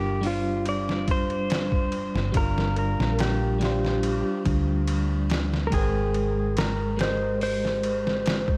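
Trip hop at 71 BPM in G phrygian, this smoky, brooding excerpt is cut from a longer piece and tuned slightly below standard pitch. A bright, twangy lap steel carries the slide melody from the start, its clean tone treated with tape echo. Beneath it, an electric guitar at the edge of break-up plays accompaniment with a harmonic tremolo, while a dark, round hollow-body short-scale bass holds the low end with punchy fingered notes. A gritty, pitched-down sampler-style drum kit enters at 0.2 seconds, up front and overdriven, with a thumpy kick, medium-tuned snare, hi-hat and ride cymbal bathed in studio reverb. The harmony rests on Gm7 before moving to Abmaj9 at 5.7 seconds, all framed by light digital ambience and a layer of vinyl crackle.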